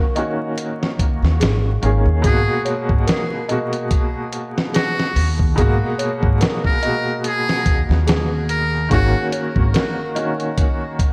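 A swung sixteenth-note groove in 4/4 from a dusty, up-front sampler-style drum kit, with a thumpy kick and gated reverb, drives this melancholic, cinematic trip hop excerpt; a woody pizzicato upright bass with tube saturation joins at 1.0 s. An intimate upright piano with audible action noise, tremolo, tape echo and 12-bit sampler grit carries the chords, while a delicate, bell-like celesta plays delayed arpeggios in the background. At 2.3 s a buzzy, breathy trumpet with a metal mute takes a jazz-style solo melody through tape echo, over a bright 1980s-style digital mix with light reverb and vinyl crackle.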